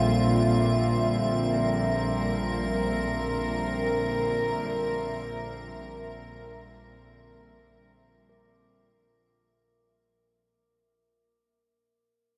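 In free time, this unsettling, ominous dark ambient drone excerpt rests on a Bbsus2 chord, with a close, reedy cello section holding sustained chords over a tense, sawtooth-edged bowed-like drone low in the register, its vibrato and built-in reverb giving it a nasal bite as a filter sweep moves across it. High above, an icy, crystalline glass pad hangs on a single note with chorus, and a barely audible bronze singing bowl rings out in arpeggios from 8.3 s. A huge, dark reverb wraps the sound as the piece fades out over its first 9.5 seconds.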